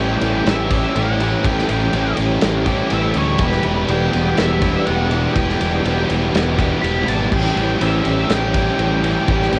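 Shoegaze and dream pop rock, wistful and blissful, cut from a longer piece and recorded at home on cassette with light reverb. Three overdriven rhythm guitars sit in the background playing riffs over A7 and Em chords: one crunchy with ensemble chorus, one warm with reverse reverb, and one bright and double-tracked. A dark octave-fuzz lead guitar carries the melody through analog delay and tape grit, while an up-front fingered bass gives a round, fuzzed low end, and a loose indie drum kit in a small room, with punchy kick, medium-tuned snare and shadowy cymbals, enters at 0.2 seconds.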